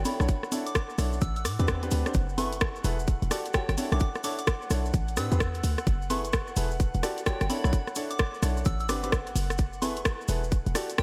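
A swung two-step garage groove at 129 BPM sets a soulful, late-night mood, with a tight, up-front electronic kick entering at 0.3 seconds beside a tape-warm analog drum machine of congas, hi-hat and rim click, a short, punchy 808-style bass with tube saturation, clear grand piano stabs with audible action noise and analog delay, a pure FM bell melody through chorus, phaser and delay, an airy, breathy pad pumping under sidechain in the background, and a grainy cabasa, all cycling Bm11, Am11, F#m11 and Em11 in a dreamy mix soaked in lush hall reverb.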